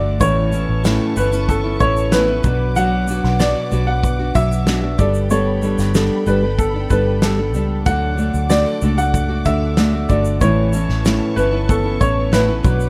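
Acoustic pop at 94 BPM in 4/4, heartfelt and sunny, this excerpt sets a clear, woody upright piano melody over warm fingerpicked nylon-string guitar, a dark, full-bodied steel-string acoustic guitar arpeggiating in the background, and a soft bed of bowed strings played sul tasto with vibrato. A round, foam-muted electric bass sits up front with a punchy, amped tone, while a loose indie drum kit enters at 0.2 s with a punchy kick, fat snare and shaker in a pumping studio room. The harmony moves through Aadd9, Bm, Gadd9 and D before returning to Aadd9, all under light reverb.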